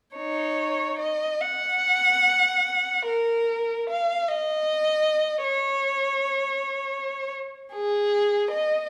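Flowing in a rubato 6/8 with the dotted-quarter pulse drifting between 26 and 53 BPM, this yearning, mournful classical fragment in Eb minor, tuned to A4 = 436 Hz, features a single warm violin playing alone from 0.2 to 8.9 seconds, ranging from Eb4 to Gb5. The bowed line is expressive, colored by vibrato and portamento, and sits up front yet carries a distant quality. A wet recital-hall reverb with a 1.3-second decay blends with a smaller room ambience, and the phrase shifts into a new section at 3.1 seconds.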